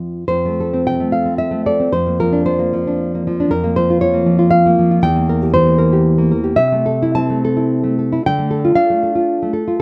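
Melancholic and passionate, this brief romantic passage for solo classical guitar sways in a rubato 3/4 between 89 and 120 BPM in F major, tuned a touch low to A4 = 436 Hz. Its nylon strings sound dark, full-bodied and thumb-plucked, sitting up front in a dry open-air setting, as the harmony moves from F through a darkening B-flat minor over F toward D minor by 8.2 seconds before the cut at 9.8 seconds.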